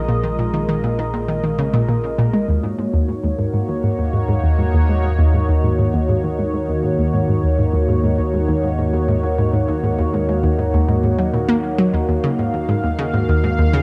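A hypnotic, mysterious stretch of ambient, sequencer-driven space music in Eb minor opens with three synthesizers sounding together at a steady 100 BPM in straight 4/4. Up front, a round, bright analog pluck with a fast attack and short decay repeats a low riff between Eb2 and Bb3, its detuned sawtooth and square tones edged with a noise layer and carried by chorus and tape echo. Equally up front, a bright, sweeping resonant pad holds sustained chords from Ab3 to F5, blending sawtooth, triangle, sine and a sub octave into an evolving, chorused texture shaped by a slow attack, a filter swell and a long release. The bass is a warm analog drone between Bb1 and Eb2, its pulse-width-modulated tone treated with chorus and a phaser. The harmony opens on a Bb7 sonority and settles onto Ebm7 at 2.5 s, where the longer second section begins. A moderate spring reverb and an echo-heavy mix give this excerpt a deep, drifting sense of space.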